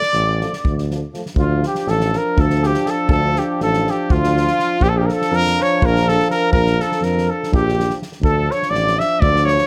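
Balkan brass band music in 7/8 at 245 BPM counted in eighths, this restless, virtuosic passage in D harmonic minor is cut from a longer piece and runs just under 10 seconds. A mellow trumpet with light vibrato carries the melody up front, touched by plate reverb, while a second trumpet, punchy and vintage in tone, plays a very quiet second line in the same register. A mellow tuba with a smooth top and its own light vibrato anchors the bass prominently from 0.1 seconds, and an acoustic drum kit played with bundle sticks adds a fat snare and punchy kick in a small-room sound. From 0.4 seconds a clear, distant euphonium holding a single note and a roomy, distant French horn fill in the accompaniment from the background. The harmony moves from D minor to B-flat at 4.8 seconds and back to D minor at 8.2 seconds, all set in a light reverb with a classical polish to the brass playing.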